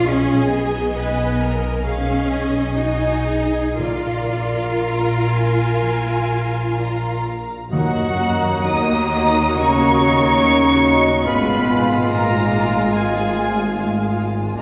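Solemn and elegiac, this slow, rubato romantic orchestral passage sets a lush violin melody with vibrato above a softer second violin line, distant clear violas, very quiet ringing harp arpeggios and rich, close cellos with double basses, while round soft-mallet timpani sound from 3.8 to 9.1 seconds, and at 7.7 seconds hollow distant flutes, a background oboe, a very quiet clarinet and bassoon, roomy mellow French horns and a vintage tuba join, all in a reverberant recital hall.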